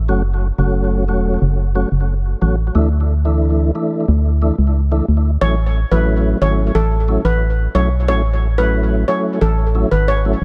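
Dancehall with a summery, sunny mood, heard as a short cut from a longer piece, built on an up-front, hollow FM bass with a fast attack and decaying tone that sits low and dark under a percussive tonewheel organ. The organ is mellow and round, with key click, chorus vibrato, a fast rotary speaker and tape echo as the chords move from F#m to Dsus2. At 5.4 seconds a metallic, shimmering steel pan takes the melody with its own tape echo, landing on an A6 chord in an echo-heavy studio mix.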